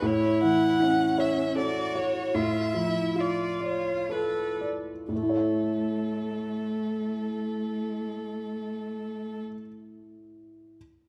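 Classical music, a slow romantic movement for piano quartet in 3/4, moves at 58-78 BPM with a rubato feel in A major, tuned to A4 = 436 Hz, and it is cut from a longer piece. The mood is lyrical and serene, with the music slowing down through its first 5.1 seconds as the harmony passes from A to D minor over A and back to A. A single bowed violin carries the melody up front, its tone rich and focused with vibrato, while a lone cello sings a smooth, even second line with clear, distant vibrato beneath it. The concert grand piano supplies the accompaniment with a warm, vintage sound and deep bass, sitting close to the listener. The string parts stop at 9.4 seconds, leaving the piano to sound alone until 10.8 seconds, all of it set in a wet recital hall reverb.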